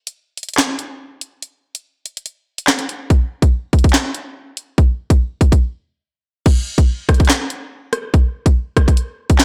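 Hip hop with a menacing, tense half-time feel, carried entirely by an up-front electronic drill drum kit of kick, snare, rim clicks, handclaps, bright hi-hats and crash cymbal, which runs from 0.1 to 9.4 seconds. The kick is hard-clipped and the sharp snare carries soft clipping, while the whole recording sounds blown-out and overdriven under a light reverb. A break at 5.6 seconds leads into a new section at 6.5 seconds before this cut from a longer piece ends.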